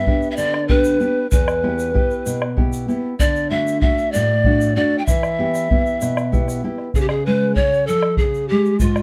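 Andean folk in a wistful, earthy mood, moving at 64 BPM in a straight 6/8 in E dorian, this cut from a longer piece sets a breathy bamboo pan flute up front, its tongued notes carrying chiff and vibrato, over a full-bodied, fingerpicked nylon-string guitar with fresh strings. A deep, close and dry bombo adds percussion while a grainy, bright egg shaker sits far lower in the mix with a touch of live room. The harmony moves from G through Em and D back to Em, then shifts to C# when a new section arrives at 6.9 seconds, all within a moderate studio reverb and a dark, warm production.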